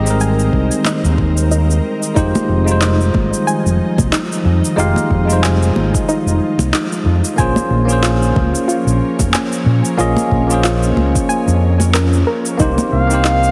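A bell-like, bright tine electric piano with tape echo carries the accompaniment in this wistful, smooth sunset chillout excerpt in F minor at 92 BPM with a swung sixteenth-note feel, set over an ethereal, airy pad with ensemble chorus, a dark, overdriven fingered electric bass up front, overdriven electronic cabasa and handclaps, a soft, nasal pluck playing chorused, echoing arpeggios in the background, an overdriven electronic kick, and very quiet, high-tuned congas, all in a lush hall and a heavily compressed radio-style sound, before a flugelhorn with light vibrato enters on the melody at 12.9 s.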